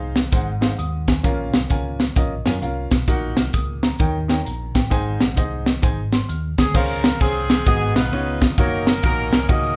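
A live-in-one-room sound with light reverb carries this uplifting, jubilant swung gospel excerpt, where a crisp fusion drum kit with dark cymbals and a high-tuned snare sits up front over a round, punchy hollow-body electric bass and a clear, vintage grand piano, and then an edgy saxophone section joins to take the melody at 6.6 seconds over chords moving from Dbmaj7 to Gb6.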